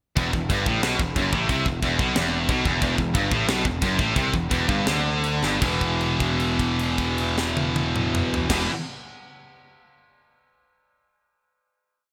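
A tight metal drum kit sits up front in a big room with gated reverb, its high-tuned snare, china and crash cymbals, kick and toms driving a metal half groove through this short, dark and epic heavy metal piece in E minor, running at 154-182 BPM in 4/4 with a 1980s-style digital sheen. Three high-gain distorted guitars, one of them double-tracked, play a single-note riff in the background, while a growly, overdriven picked electric bass doubles that riff in driving eighth notes. The tempo slows from 2.8 seconds, a drum fill lands at 5.4 seconds, and the band closes on a held E5 chord from 5.6 seconds.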